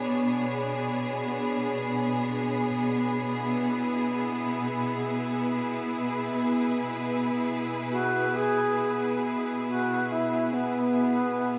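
Bathed in a huge, wet reverb, this serene, melancholic ambient excerpt drifts in free time, its rich, biting symphonic string section holding sustained chords close and up front, from Bm69 to E/B. Behind them, a breathy, wind-like tuned noise texture fades in across the whole passage, sitting in the background with its own reverb. At 7.9 seconds a mellow alto flute with vibrato and delay enters with a distant, tongued melody.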